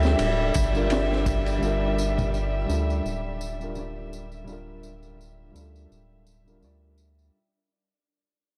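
A crunchy breakbeat kit with a punchy kick, high-tuned snare and dark ride cymbal swings the sixteenths for just the first 1.6 seconds, while soft-handed tambourine and congas and a round, deep analog bass carry the hypnotic trip hop groove on a single Gm7 chord. A woody, slightly detuned upright piano with tremolo and tape echo accompanies a close, bowed violin section with vibrato holding melancholic sustained chords, and a faint grainy, flickering granular texture shimmers underneath. The short excerpt fades out throughout, set in a small, lightly reverberant room with a dark, warm production.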